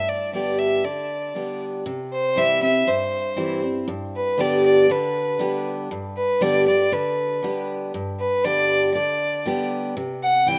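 Recorded with a rough home-demo feel in a small room with light reverb, this short country cut from a longer piece has a sunny, heartfelt mood and a straight pulse. A single clear, smooth fiddle carries the melody up front with light vibrato and an even bowed tone, while a bright picked dreadnought acoustic guitar plays accompaniment alongside it, both sounding from the start to 10.6 seconds. The harmony moves between G and C, with a new section arriving at 1.9 seconds.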